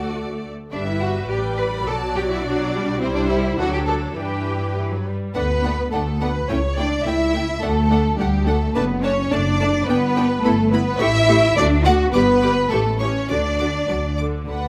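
Light reverb gives a gentle sense of space to this graceful, cheerful excerpt from a quick classical-period movement for string orchestra at 105 BPM in 2/4, where a clear, intense violin section carries the melody from the background while a warm, smooth-topped second violin line sits up front, rich violas supply even accompaniment, and expressive, distant cellos share the bass with focused double basses, also up front, as the music turns from G major to D major at 5.3 s.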